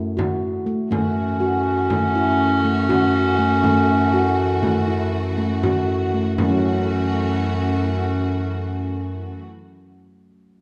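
A dark, warm-toned production in a wet recital hall sets this brief contemporary chamber piece in 11/8, pensive and restless in F# minor at 241 eighth-note beats per minute. A ringing handpan spins arpeggios over an up-front bass clarinet holding the low F#, while a deep, saturated frame drum sits in the background from 0.2 to 6.6 seconds. From 0.9 seconds a distant, roomy clarinet carries a second line on C#4 above lush, bowed strings sustaining chords with even vibrato, and the texture moves into a new section at 6.4 seconds before the fragment breaks off.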